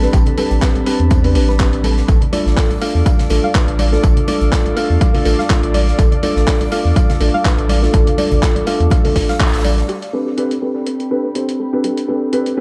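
Hypnotic deep house at 123 BPM in A minor with a light 16th-note swing, this excerpt from a longer piece moves between Am11 and Dm/A beneath a felt-muted upright piano's soft, intimate stabs, which sit up front through tape echo and a low-pass filter, over a round, deep analog bass with tube saturation and a punchy, tape-warm electronic kick re-recorded in a small room. A warbling, nostalgic pad holds sustained chords while a gentle pluck plays background arpeggios, and the beat fills out with gritty sampler-style handclaps and hi-hat, ringing hard-handed congas, and a tight, airy metal kit of hi-hat, snare and tambourine far back in the mix, with the pad, piano, bass, pluck and metal kit pumping under sidechain. After a band accent at 9.4 seconds, the kick, bass, congas and metal kit drop out by 9.9 seconds, leaving piano, pad, pluck and sampler kit as filter sweeps move over the piano and pad in a light, echo-heavy small room.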